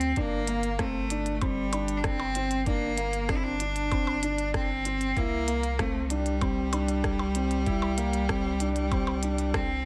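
A straight 4/4 pulse at 96 BPM sets this melancholic, intimate piano and strings electronica excerpt in G dorian. A muffled, thumpy sampler-style kick enters at 0.2 seconds beneath a minimal electronic kit of overdriven clicky hats, percussion blips and rim clicks, while a round analog bass with tube saturation and sidechain pumping holds the low end. A dark, mellow grand piano riff sits alongside a single bowed cello carrying the melody with biting vibrato, as the harmony moves from Gm to C5 at 5.2 seconds inside light reverb and digital ambience.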